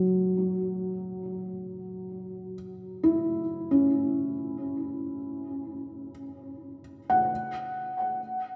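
A felt-muted upright piano opens on a C# minor chord and plays alone for the full 8.6 seconds of this ambient fragment, cut from a longer piece. The mood is spacious and reflective, moving in free time with the instrument tuned to A4 = 441 Hz. The thick felt gives the piano a dark, mellow, vintage tone that sits up front and feels intimate, its notes ranging from F#3 to F#5. A diffuse ambient delay trails behind the piano, while a wet concert hall reverb with a 2.5-second decay surrounds the sound. At 7.3 seconds the harmony settles onto an F#5 chord.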